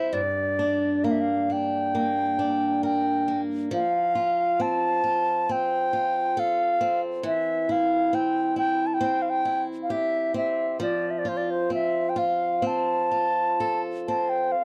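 A Celtic slow air in a mournful, longing mood, this short cut from a longer piece moves with a free, rubato feel over a Gm, F, C/E, F progression. An up-front baroque flute carries the melody with a pure, woody tone, vibrato, tongued notes and lifted highs, while a warm, boxy, picked acoustic guitar, also up front, supplies swing-style accompaniment. The sound is dry and intimate, like a close 1970s-style studio recording with only light reverb.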